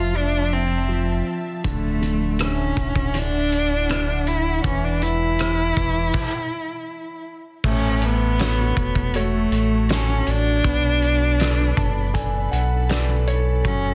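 Hopeful and heartfelt, this pop ballad excerpt sets a rich, bowed solo cello with vibrato up front over a clear, intimate concert grand piano, a deep sine sub bass and a mellow, ethereal pad drifting in the background with chorus, reverb and phaser. A loose, gritty indie drum kit with a fat snare and dark cymbals joins at 1.6 seconds, and the band stops together from 6.1 to 7.6 seconds before the second section. The piano plays a fill from 11.4 seconds, all in a small room with a dense, heavily limited modern master.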